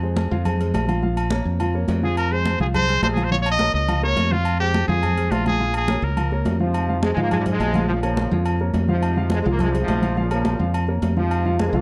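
Recorded close and detailed with little reverb, this short cut from a longer salsa piece in F minor moves at a driving 210 BPM in straight 4/4, passionate in mood. A dark, mellow concert grand piano with audible action noise and short sustain carries the accompaniment throughout, rocking between Fm and Bbm, while a growly, up-front fingered electric bass anchors the low end. Congas with a thin, medium-tuned skin sit in the background under soft hands, and ringing metal-shell timbales and agogo bells add a live-room shimmer. At 2.0 seconds a clear, punchy vintage trumpet takes the solo melody with scooped notes, handing over at 6.6 seconds to a tight trombone section with light vibrato, a smooth top and a slapback echo, which carries the tune to the end at 11.8 seconds.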